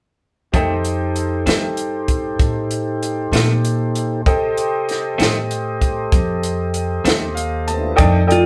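A slow blues in a straight 12/8 feel, soulful and swaggering, heard as a short cut from a longer piece. The band plays live together in one room with a moderate studio reverb, and from 0.5 seconds the whole group sits on an F7 chord. A tonewheel organ holds clear sustained chords through a slow rotary speaker, while a clean, picked electric guitar adds compressed accompaniment with tremolo. The upright bass is pizzicato and woody on steel strings, and a compact cocktail kit sounds dry and up front, with a high-tuned snare, punchy kick and hi-hat. A bright upright piano, brilliant and polished with long sustain, plays a fill from 7.0 to 8.0 seconds. At 8.3 seconds a clean lap steel guitar enters up front, fingerpicked and compressed with slide, landing on a single F4.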